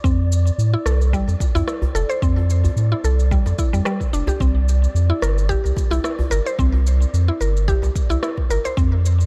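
A round, sidechain-pumped sub bass sits up front in this earthy, peaceful organic downtempo piece, carrying Fmaj9 into C7sus2 under woody, chorused and delayed mallet-like synth arpeggios, a deep electronic kick, a soft-handed djembe with metal rattles entering at 0.9 seconds, electronic cabasa and rim clicks, and a breathy, wind-like tuned noise texture drifting in the background of a dark, dry production.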